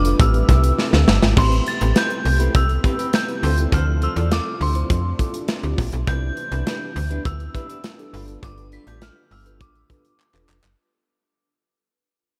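A snappy, metallic slap-like FM bass sits up front in this short cut from an early-eighties boogie funk piece, moving at 102 BPM in a straight 4/4 feel in A minor with a funky, late-night mood. A punchy modern studio drum kit of kick, medium-tuned snare, hi-hat, crash cymbal and handclaps shares the foreground, with a drum fill at 0.8 seconds leading into the main section and another closing it at 10.2 seconds. Above them, a dark, detuned FM synth bell carries an eerie, inharmonic melody high in the register, coloured by chorus, phaser and analog delay. A mellow tine electric piano plays clean accompaniment through its built-in speakers, while a fingered semi-hollow electric guitar adds a riff in the background through lush chorus, and a very quiet, swirling string machine holds sustained sawtooth chords with ensemble chorus and phaser. The harmony moves from Am7 to Am9, Dm7, Cmaj9 and G7, and the dreamy mix is soaked in cathedral reverb as the whole passage fades out from 1.4 seconds onward.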